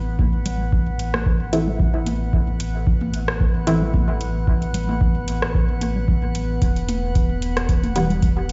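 Over a steady 4/4 pulse with a light swing on the sixteenths, an up-front electronic kick drum anchors this nocturnal, hypnotic dub techno fragment, cut from a longer piece. A booming analog drum machine adds metallic hi-hats and a rim click soaked in dub echo, while electronic toms and congas sit in the background, pumping against the kick and trailing their own echoes. Beneath them, a soft, round sub bass with tube saturation breathes to the sidechain from the first second, and a calm, glassy texture of drifting overtones hovers above with chorus and its own reverb. A muted, detuned chord stab with a filter pluck enters at 1.5 seconds, its decaying hits colored by chorus, phaser and dub echo, then returns briefly near 8.0 seconds after the harmony settles on an E5 chord at 6.6 seconds. The whole sounds as if played on a big sound system in a bare stone room, dark and rolled off at the top.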